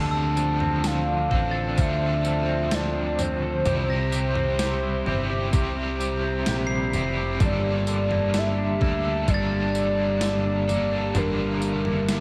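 A warbling, nostalgic synth lead carries the melody of this haunting, melancholic dream pop excerpt at 64 BPM in G dorian, over a bright, overdriven stack guitar with tremolo and lush chorus, a twangy, slightly broken-up electric guitar playing fingered arpeggios through digital delay, a detuned, lo-fi pad with phaser sustaining chords that move from Dm7 to C to Gmadd9, and a round, punchy picked bass, joined at 0.1 s by a faint, bell-like glockenspiel and at 0.4 s by an overdriven gated 80s drum machine with a thumpy kick, gated-reverb snare, tambourine and toms, within a moderate concert hall reverb.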